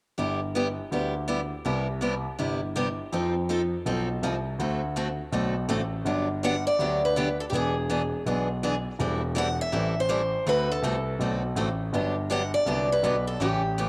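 Acoustic string swing in the jazz manouche style, this short cut from a longer piece feels swinging and playful. From 0.2 s a bright, boxy parlour steel-string guitar picks out the accompaniment with a cassette tape colour, while a warm, natural grand piano holds down the bass line in its low register, both sitting up front. At 6.4 s a second picked parlour guitar enters with the melody, slightly louder and just as up front, its finger squeaks audible. The harmony moves from G6 through Cmaj7, F7 and D7 before a second section settles on Gmaj7, E7, Am7/E and D7, returning to Gmaj7. A moderate spring reverb and the homespun feel of a cassette home recording give the whole thing an intimate, lived-in character through to 13.9 s.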